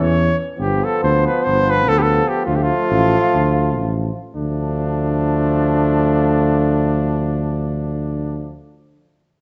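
Balkan brass band folk, fiery and virtuosic, heard in a short cut from a longer piece. A mellow cornet carries the melody up front with light vibrato and a smooth top over a dark tuba bass that sits equally forward, while a clear, close-miked trombone in the background and a distant, roomy second trombone supply the accompaniment, all four in a classical style. The dusky production wraps the band in the wet reverb of a recital hall, and the chords move from G7 to Dm as the opening passage gives way to a second one at 4.4 seconds.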